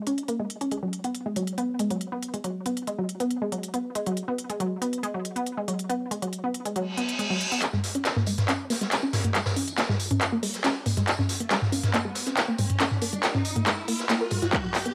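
Driving peak-time techno at 139 BPM in Bb phrygian, this relentless fragment opens with a juicy, squelchy resonant blip pluck riff, chorused, tube-saturated and pumping against the sidechain with tape echo, sitting up front over an overdriven techno kit of handclaps, smooth hats and toms, all heard through a short, wet booth ambience and a home-cassette tone. A reverse cymbal sweeps in at 6.9 s, and from 7.6 s a build-up with a riser and drum fill brings in a distant, roomy jazz brush kit whose rolled-off snare, hi-hat and tambourine add an acoustic texture. A heavy, overdriven electronic kick lands only at 14.5 s, just before the cut.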